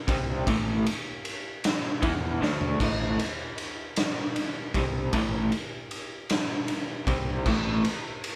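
A live-room recording with light reverb catches a psychedelic rock band playing together, a kaleidoscopic, hazy fragment cut from a longer piece. It moves at a slow 52 beats per minute in 6/8 with a straight feel, sitting over an A5 chord. An electric guitar through a small old amp plays the riff up front, its dark, slightly broken-up picked tone pulsing with tremolo across a range from A2 to E4. Beneath it, a fingered electric bass with fuzz and overdrive adds a growly, punchy low end between A1 and E2, and both guitar and bass stop at 7.8 seconds. The raw garage drum kit, saturated and gritty with a rolled-off top, brings a punchy kick, a medium-tuned snare, toms, ride and crash in a bright stone room. A drum fill lands at 2.4 seconds, and the kit carries on alone until 8.4 seconds.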